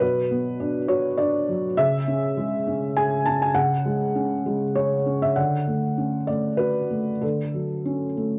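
A cassette-recorded home take in a small room with moderate spring reverb frames this brief, intimate and wistful fragment of neoclassical minimalist piano, where a solo felt-muted upright, dark, mellow and up front with a vintage tape tint, moves in a rubato 3/4 through Bm, C#m and Dmaj7 across its 8.4 seconds.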